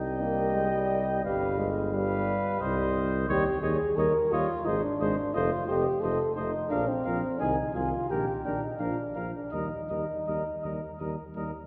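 Triumphant and stately, this classical brass quintet excerpt moves at 87 BPM in a rubato 3/4, in Eb major, with the trumpet carrying a punchy, vintage-toned melody high above a clear flugelhorn second line touched with light vibrato. A distant, roomy French horn and a dark trombone sitting in the background fill out the accompaniment, while an up-front tuba anchors the bass with a soft attack and smooth top. The harmony travels from C minor through dominant sevenths to a settled cadence on Eb at 9.5 seconds, all bathed in a wet church reverb.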